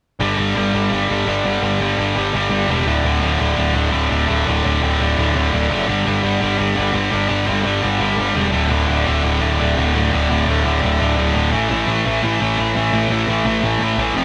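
A double-tracked, overdriven electric guitar riff sits up front over a punchy fuzz-laden picked bass in this rowdy, energetic punk passage cut from a longer piece, both playing straight through from 0.2 to 14.2 seconds over G5, D5 and A5 power chords in a rough rehearsal-room recording with a small room's moderate ambience.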